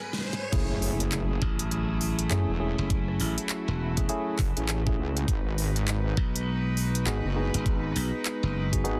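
Swaggering and funky, this glitch hop excerpt at 101 BPM with a swung 16th-note feel in F# dorian opens on a brief drum fill, a background riser and bowed, reedy gut-string chamber chords that pump beneath throughout, before dropping at 0.5 s into a heavy, saturated wobble bass with chorus, a knocking electronic kick, a pop drum kit with fat snare, crisp hats, handclaps and rim clicks, growly slap bass entering at 1.4 s, and clean tine electric piano stabs carrying 12-bit grit, digital delay and sidechain pumping, all moving from G#m7 to F#m9 and back in a dense, heavily limited mix with light reverb.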